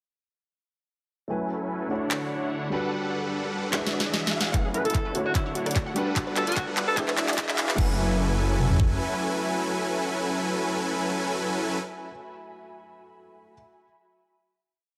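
Lush and emotional, this short half-time future bass piece opens at 1.3 seconds with huge, bright supersaw chords pumping under a filter sweep and a dark, mellow grand piano whose action noise is audible, while an ethereal pad hovers very quietly beneath. Sharp trap snare, snaps, claps, rim clicks, a crash, bright hats with rolls and a faint riser soon join in. At 4.5 seconds the build brings a knocking kick and toms, a thick, chorused detuned saw bass with long gliding notes and a warbling vintage pluck arpeggio. Moments later a breathy, distant alto saxophone enters with brief jazz-style phrases and light vibrato, all inside a moderate digital hall. Tape echo trails the supersaws, pluck, piano and sax before the music settles on a final held chord at 7.8 seconds.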